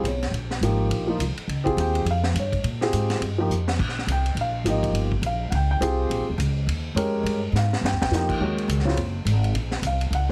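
Heavily compressed into a radio-like sound with light reverb, this cut from a longer modal jazz piece swings with a hypnotic, intense mood. An up-front, woody upright piano accompanies a pizzicato upright bass with steel strings, while a vintage drum kit with dark cymbals, a high-tuned snare and a punchy kick plays crash, hi-hat and ride, adding fills at 3.5 seconds and from 7.5 to 8.1 seconds. The harmony moves from Bbm69 to Eb, then settles on Ebm9 near the end.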